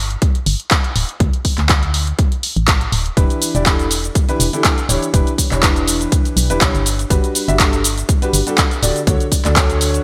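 Piano house at 122 BPM in E dorian, bittersweet yet energetic, with a light swing on the 16ths and a bright 1980s-style digital sheen. A hollow, dark, organ-like FM bass with sidechain pumping sits under an up-front analog drum machine of handclaps, hi-hat and shaker with gated reverb, while a punchy, overdriven electronic kick re-recorded in a large room enters at 0.2 seconds. At 3.2 seconds a clear, woody, slightly detuned upright piano joins with a boxy, long-sustaining riff through digital delay and pumping, moving from Em7 to Gmaj7 and Dmaj7.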